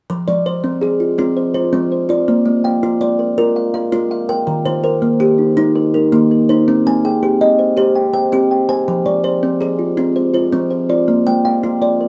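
A 12/8 interlocking cycle in the southern African mbira tradition sets a hypnotic, trance-like mood, as a thumb-plucked solid-board kalimba spins ringing arpeggios from 0.1 s and is joined at 0.3 s by a slightly softer hollow-box kalimba, both woody and up front in a boxy small room within a dark, warm production while the harmony circles through Fm, Bb, Eb and Cm.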